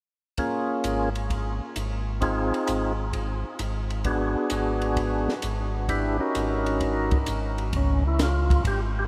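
A percussive tonewheel organ with key click and a slow rotary speaker carries the bluesy, soulful melody from 0.4 seconds in this soul jazz organ trio fragment at 131 BPM with a swung 4/4 feel in Db mixolydian. It plays alongside a compact cocktail drum kit with a high-tuned snare and punchy kick, and is joined by a mellow, round tonewheel organ bass with vibrato entering at 0.8 seconds, all set in a vast, echoing space with a huge ambient reverb as the harmony moves from Bbm7/Ab to Db at 7.7 seconds.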